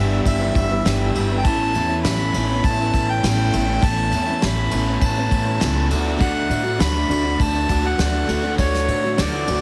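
A straight 4/4 pulse at 101 BPM, set by a soft brush drum kit with a punchy kick and dark cymbals entering at 0.3 s, drives this dusty, wistful folk rock and heartland rock passage, where a woody pizzicato upright bass, a picked steel-string acoustic guitar with an auditorium tone and a double-tracked crunchy overdriven guitar riff sitting in the background support a reedy, dark accordion melody with digital delay, while a very quiet, lightly overdriven tonewheel organ holds sustained chords through a slow rotary speaker with key click, the whole mix carrying light reverb and a heavily compressed radio sound as the harmony moves from G6 to Aadd9 to D.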